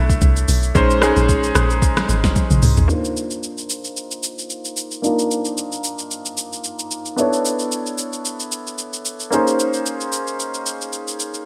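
A bright, intimate grand piano with audible action noise and long sustain carries this late-night, hypnotic amapiano fragment, joined at the start by a deep, round log drum bass that drops out at 2.9 seconds after a drum fill from 2.4 seconds, while an up-front electronic R&B kit of soft kick, fat snare, smooth hats, rim click, shaker and toms, treated with gated reverb, keeps a lightly swung groove under lush hall reverb and bright 1980s-style digital production.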